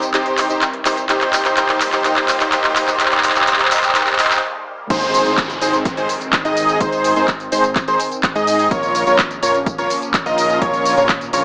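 A huge, detuned supersaw riff leads this euphoric, triumphant festival progressive house cut at 126 BPM in Ab major. It pumps with the sidechain and carries tape echo over a lush pad colored by chorus and phaser, a fat analog bass sitting in the background, and a very quiet riser and downlifter through the build-up. A house drum kit of crash, handclaps, hi-hat and tambourine plays a fill into a brief break, then at 4.9 s the drop lands with a punchy electronic kick and a bold, nasal, warbling unison lead playing arpeggios, all in a moderate room reverb with a small-speaker tone as the chords move from Cm and Eb to Ab and Bbm.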